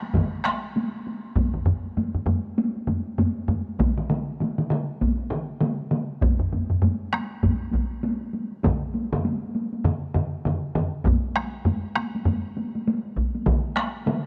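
This is a Japanese traditional taiko drum ensemble piece, ceremonial and powerful, moving at 99 BPM in 4/4 with a 60% swing on the sixteenths. Four taiko ensemble parts play, entering within the first fraction of a second and sitting up front in the mix. Three are struck with hard sticks and one with heavy sticks. One carries the sound of a live room, another has a vintage, band-limited character, and a third is close and dry. The arrangement runs through an opening passage before shifting to a new section at 11.1 seconds, with one of the drum parts dropping out at 12.4 seconds while the rest carry on. The whole has the feel of a dry, close 1970s-style studio recording with a touch of studio reverb, and it is cut from a longer piece.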